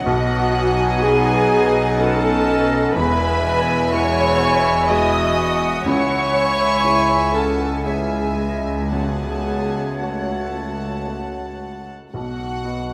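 Moving in a slow, rubato 3/4 at roughly 54-63 BPM, this sorrowful, bittersweet cinematic cue unfolds in F# dorian, cut from a longer piece. A violin section carries the melody high in its range with a soft, floating, sul tasto tone, while a second violin line, a dark, distant solo clarinet and an airy, crisp-attacked flute ensemble weave supporting lines beneath it. The viola section gives lush, woody accompaniment with vibrato, joined by a baby grand piano sitting naturally in the background, and a distant French horn section holds sustained chords. Cellos and a rich, bowed double bass section anchor the low end as the harmony moves through B, E, C#m and F#m/C# before returning to B at 12.1 seconds. Timpani with medium mallets add a barely audible touch between 8.9 and 10.5 seconds, and a generous, wet scoring-stage reverb wraps the ensemble.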